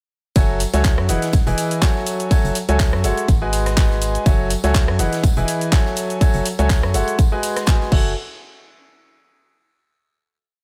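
Bittersweet, soulful piano house that opens straight into a drop at 0.4 seconds and closes with a final hit at 8.2 seconds, cycling through F#m9, Emaj7 and G#m7 chords. An up-front, clear grand piano with long sustain plays dotted-rhythm chords in drop-2 voicings, with delay and sidechain pumping. Alongside it sit a hollow, dark, organ-like FM bass riff, syncopated and tube-saturated, a punchy four-on-the-floor electronic kick, a tape-warm house kit of shaker, hats, ride, rim, clap and crash re-recorded in a large room, and a very quiet looped breakbeat from an oversized low-tuned acoustic kit with a fat snare and tambourine in a bright stone room.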